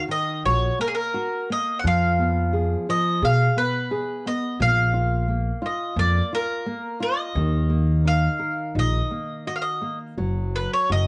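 Tender and nostalgic, this fado-style ballad fragment drifts in a loose rubato 4/4. A bright, double-strung mandolin carries the picked melody up front, coloured by cassette tape and plate reverb, over fingerpicked classical nylon-string guitar with fresh strings, while a growly, woody pizzicato upright bass with tube saturation joins at 0.5 s. It sounds like an intimate home cassette recording in a small booth, with the top end rolled off.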